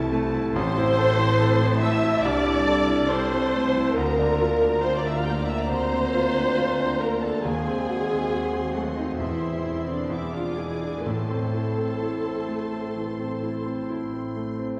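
A brooding, tragic classical passage in A minor opens with a clear concert grand piano carrying the melody in its low-to-middle register, sitting up front with a deep bass and a vintage character. Around it, a rich chamber violin section also carries the melody high above, while a lush symphonic violin section adds a second line and an expressive viola section fills the accompaniment close and forward, its bowed tone colored by vibrato and portamento. A mellow French horn section holds sustained chords in the background. Very quiet symphonic cellos and background double basses anchor the bass beneath. At roughly 69 BPM the pulse moves with uneven, rubato timing, and the harmony darkens through a diminished chord before a dominant seventh resolves back to A minor near 11.1 seconds. Very quiet timpani with medium mallets sound close and dry at 0.6 seconds and again from 9.2 seconds, set against a wet church reverb in this excerpt cut from a longer piece.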